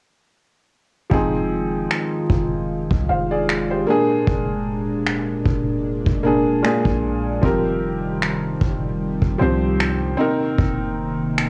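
A lazy 4/4 pulse with a light 16th-note swing sets the pace for this sensual, moody contemporary R&B excerpt, cut from a longer piece. A vintage brush drum kit sits up front with a dark, smooth character, finger snaps and a tight kick, its top rolled off and its sound run through cassette tape. Underneath, an 808-style bass adds deep, boomy low end with a fast attack and decaying notes. A felt-muted upright piano carries the accompaniment, soft and intimate, bathed in plate reverb. A chorused pulse-width pad sustains shimmering, retro chords with a soft attack and a moving notch. The harmony moves from Fm7 to Bb7, then Eb6/F and Cm7, all in the light reverb and hazy intimacy of a home cassette recording.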